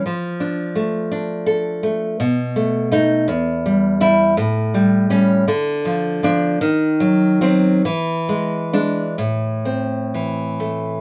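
Swaying in a rubato 6/8 at roughly 42-58 BPM counted in dotted quarters, this excerpt from a longer romantic piece for solo classical guitar sits in A minor with a nostalgic yet sunny mood. A single nylon-string guitar, fingerpicked and placed up front, rings out with the warm tone of fresh strings and a finger squeak, ranging from E2 to A4 across a chord path that runs from Dm/F through B7, Em, A7, Dm and D#m6 to E7 before settling on Am at 9.2 seconds. A moderate studio ambience gives the instrument a close, natural room around it.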